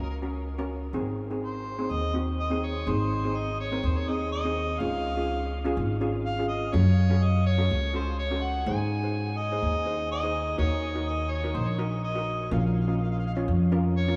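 A vast, echoing space surrounds this sunny, festive calypso excerpt, where a huge ambient reverb with a 9.3-second decay hangs over every note. At 124 BPM in a straight 4/4, a mellow, vintage-toned harmonica carries the pop-style melody, its scooped notes standing out from the opening solo that runs to 2.9 seconds. Double seconds steel pan, struck with hard rubber sticks, supplies accompaniment that is metallic and shimmering yet dark and smooth. Up front in the mix, a pizzicato upright bass with steel strings gives a woody, acoustic foundation. The harmony moves from Gb and Ab into Db, then darkens through Gbm, Ebm and Bbm as the longer second section unfolds until 14.2 seconds, where the clip breaks off from a longer piece.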